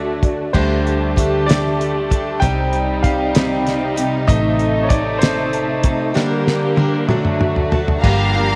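A concert grand piano takes the lead in this dramatic, aching six-eight pop ballad, carrying a solo from 0.5 to 8.0 seconds with a clear, polished tone, long sustain, deep bass and audible action noise that makes it feel intimate and present. Beneath it, an up-front studio string section holds sustained chords with a soft, sul tasto attack and light vibrato, while a dark, round, foam-muted electric bass anchors the low end. A damped 70s drum kit sits close and dry, with dark cymbals, a fat snare and a tight kick, and it plays a fill from 6.2 seconds. Further back, a full-bodied dreadnought acoustic guitar picks arpeggios through tape echo. The harmony moves at a slow 64 BPM through D, Dsus4, Cm, Adim and Gm/D before settling on Gm7 as an earthy violin section enters on a second line at 8.0 seconds, just before this excerpt from a longer piece is cut off, all set in a light studio reverb.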